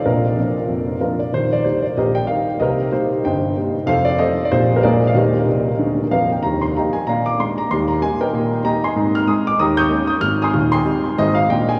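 A dark, mellow concert grand plays stride piano alone in Eb major at 188 BPM, swinging its eighth notes with an exuberant bounce from deep bass notes up to the high treble. The instrument sits up front and intimate, its vintage tone touched with audible action noise and a tape echo, while a cathedral reverb soaks the mix in a dreamy haze. A short fill at 5.5 seconds leads into a new section at 6.4 seconds that moves toward Ab and Abmaj7 harmonies before this clip from a longer piece cuts off at 11.8 seconds.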